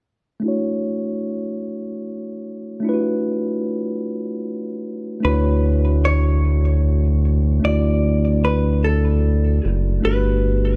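Slow R&B in 6/8 at 50 BPM in D major, this intimate fragment cut from a longer piece opens at 0.4 seconds with a mellow, clean tine electric piano carrying the accompaniment through a low-pass filter, a filter sweep shaping its sound until 5.2 seconds. At 5.2 seconds the second section begins as a vintage hollow-body jazz guitar takes the melody, its dark, picked tone compressed and set in digital delay. A smooth synth bass enters at the same moment, a sawtooth and triangle blend with a fast attack and sustained notes, sitting dark and up front as the loudest part. The harmony rests on Dmaj9 before moving to Gmaj9 at 10.0 seconds. Light reverb surrounds the players, and the recording carries audible lossy compression artefacts.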